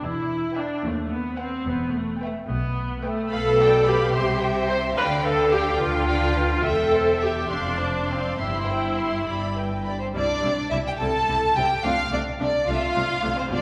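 A rich viola section sits up front, carrying the accompaniment with smooth, even vibrato across this quick, spirited and graceful classical-period movement for string orchestra, taken from a longer piece. The music moves in 6/8 at 72 dotted-quarter beats per minute with a rubato feel. It opens on E minor harmony before settling into C major at 3.3 s. A lush, expressive violin section takes the melody from 0.6 s, while a second violin section, also close and forward, traces a smooth second line. Beneath them a warm cello section and a dark double bass section, with soft attacks and gliding portamento, anchor the bass line, and a new passage begins at 10.2 s. A wet, hall-like reverb surrounds the ensemble, lending the bowed strings a spacious, resonant glow.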